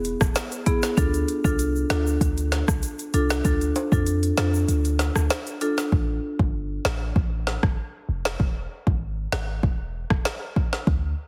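This cut from a longer dancehall piece has a heavily compressed, radio-like sound with light reverb, and it feels tough and sultry in a straight 4/4. An electronic afro-pop drum kit sits up front with a deep kick, woody snare, crisp hats and rim clicks, its tape-warm character coming from being re-recorded in a small room. A clean, sine-like 808-style bass booms low with a fast attack and dark decay. From 0.7 seconds, a marimba struck with hard mallets adds a smooth, percussive accompaniment. Bright tube shaker and timbales, close and dry, sit in the background through the opening section. The kick drops out from 4.7 to 5.9 seconds, and by 5.9 seconds the marimba and percussion have stopped, leaving drums and bass for a break that moves from a rootless Fadd9 back to E.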